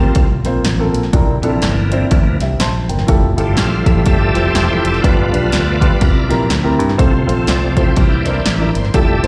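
Heard through a venue's PA in a recital hall with light reverb, this short cut from a longer live uptempo gospel piece in F major moves at 123 BPM with a swung 4/4 feel and a jubilant, hopeful mood. A bright, shouting tonewheel organ, lightly overdriven with key click, chorus vibrato and a slow rotary speaker, solos across the full 9.3 seconds over sustained chords, while a natural-sounding baby grand piano with slapback echo accompanies and adds a fill at 2.4 seconds. Underneath, a fingered electric bass plays direct and amped, and a punchy analog drum machine, re-recorded in a small room and sitting up front with its kick, snare and hi-hat, drives the progression from Gm11 and C9 through Fmaj9, G7 and C7 to F before returning to C9.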